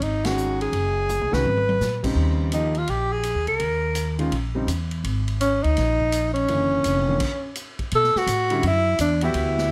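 A brisk swing at 167 BPM in 4/4 drives this intense, searching modal jazz passage, cut from a longer piece. The big-band drum kit sits low in the mix, with a boomy kick, a medium-tuned snare and a natural big-room sound across its cymbals, hi-hat and toms; a band accent lands at 0.2 seconds, where the concert grand piano joins, and the drums play a fill at 1.1 seconds. Up front, the alto saxophone carries the solo melody with a clear jazz tone, vibrato and plate reverb, while the pizzicato upright bass sounds woody, growly and thumpy on steel strings. The piano accompanies with deep bass and long sustain over sus4 and altered dominant chords that settle onto Bm11. A stop at 7.2 seconds briefly halts the band before a new section opens, all of it set in a moderate studio reverb.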